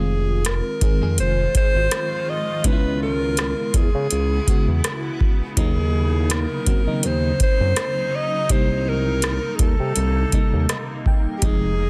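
A lightly swung 82 BPM groove in 4/4 comes from a booming, overdriven analog drum machine, with deep kick, metallic hats and rim clicks, anchoring this longing, late-night contemporary R&B excerpt alongside a smooth, sawtooth-edged synth bass that sits up front. A tremolo-laced FM electric piano comps through Fm7, Dbm7, Ebm7 and Cm7 and adds a fill at 10.3 seconds, while a cloudy granular pad drifts in at 1.0 seconds, pumping beneath its own built-in reverb. Above them, a breathy, whispered alto saxophone carries the melody with subtone, vibrato and tape echo, close-miked and intimate in a dry, dense, heavily limited mix.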